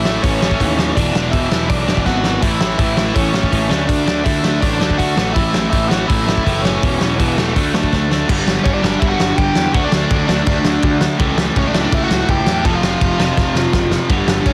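Punk rock in A major at 164 BPM, upbeat and rebellious, driving along in a straight 4/4 as a cut from a longer piece. A biting, overdriven lead guitar carries the melody from the start over two picked, overdriven electric guitars set in the background playing riffs, one bright and the other warm and compressed. Underneath, a picked electric bass with fuzz and overdrive growls through the low end. The loose indie drum kit sits up front with a fat snare, punchy kick, dark cymbals and a gritty, saturated studio-room tone with a rolled-off top; it enters at 0.1 seconds and adds short fills, the last at 13.4 seconds. The harmony moves through A, E and D chords into power chords, shifting into a new section at 8.3 seconds, and the mix is dry, dense and heavily limited.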